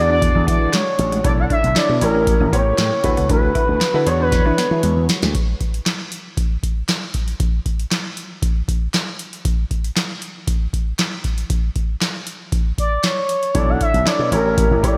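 A light reverb and digital ambience frame this slick, late-night boogie funk cut at 117 BPM in B dorian, driven by a booming, tape-warm analog drum machine with a deep kick, crisp snare, metallic hats and handclaps that runs throughout. Up front, a smooth sawtooth portamento lead with chorus, vibrato and slapback echo sings over a growly, bright slap bass with an envelope filter, an intimate concert grand piano whose action noise is audible, a thick detuned unison pad with phaser, and a very quiet, dark clean electric guitar riff. After a drum fill, the melodic parts drop out by 5.3 seconds, leaving the drum machine alone until the lead returns at 12.8 seconds and the piano, pad and bass rejoin at 13.5 seconds.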